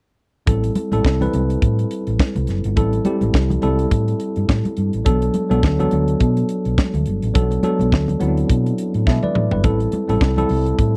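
A tight, dry funk drum kit with a high-tuned snare and rolled-off top drives this sultry, danceable disco excerpt at 105 BPM with a light 16th-note swing in A dorian, alongside a dark, round hollow-body bass, a worn, slightly out-of-tune tine electric piano moving between Am7 and Bm7, and very quiet, damped congas, all captured in a close 1970s-style studio sound, with a drum fill at 9.1 seconds.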